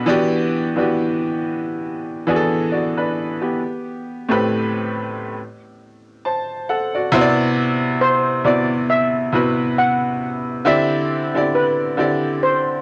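Moody and late-night, this swung R&B fragment at 68 BPM opens on an up-front grand piano whose clear, worn, short-sustained chords, colored by cassette tape, move from Em7 to Am7 before a brief chord-free stretch and a turn to Cmaj9#11, where at 8.0 s a metallic, shimmering steel pan struck with hard rubber sticks takes the vintage, band-limited lead over a closing D9sus4, all set in light reverb with the feel of a home cassette recording.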